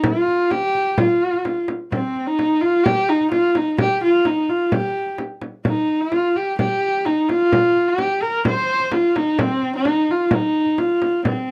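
A single bowed horsehead fiddle carries the melody between C4 and C5 in this 11.5-second cut from a longer piece of Mongolian folk music, its biting, nasal, husky tone shaped by light vibrato and portamento. A small, bright frame drum accompanies in 4/4 at 128 BPM with a straight feel. Both sit up front in a dry, close 1970s-style studio sound with light reverb, evoking a windswept, vast mood.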